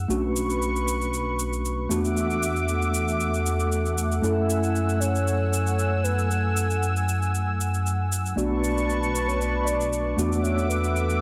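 This dry, gritty hardware recording has little reverb, setting a nu-disco groove at 116 BPM in F# minor with a cosmic, sleek mood, cut from a longer piece. A glossy, saturated synth bass with a filter pluck and chorus sits up front, holding the low end while a thick, detuned unison pad carries sustained chords with a bright, airy shimmer. A worn, slightly out-of-tune tine electric piano plays accompaniment as though through built-in speakers, and an electronic, tape-warm shaker ticks along from the start. At 4.2 seconds a soft, round octave-layered synth lead enters with the melody, its dark triangle and sine tone coloured by vibrato, chorus, phaser, tape echo and vintage 12-bit sampler grit. The harmony moves through Bm9, E9sus4 and F#m9 before returning to Bm9 and E9sus4.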